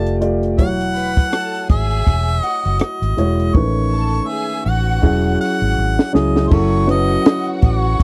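A clear harmonica sings the melody over a dark grand piano, whose mellow, intimate chords carry audible action noise and long sustain, while a vintage muted fingered electric bass gives a round, punchy, foam-muted low end. A moment later a compact cocktail drum kit joins with a tight kick, high-tuned snare, rim click, hi-hat and crash, its top rolled off and its small-room sound sitting up front. At 0.9 seconds a symphonic string section enters softly behind the harmonica as a lush, bowed second line with expressive vibrato. This is smooth, bittersweet 1970s-style soul at 81 BPM in 4/4, swung lightly on the sixteenths, drifting through rich sixth-nine and ninth chords. A drum fill runs from 3.5 seconds, and at 6.5 seconds the piece turns to a new section on F#m7. The dry, close studio sound keeps this short cut from a longer piece intimate and immediate.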